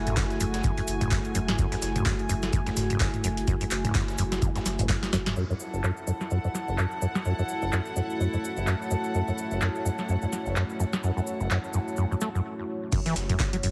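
A swung 127 BPM groove of electronic kick, booming analog drum machine with crisp snare, claps and metallic hats, a dusty sampler-style soul kit and grainy cabasa drives this gritty, hypnotic acid house in F# minor, where a rubbery, overdriven acid bass riff and round sine sub bass pump beneath a detuned sawtooth pad held on F#m7; the kick, sub and soul kit drop out around 5 s as a filter sweep moves across the pad and reedy bowed strings enter at 5.4 s, before a break at 12.5 s, the whole mix pressed into a heavily compressed radio sound.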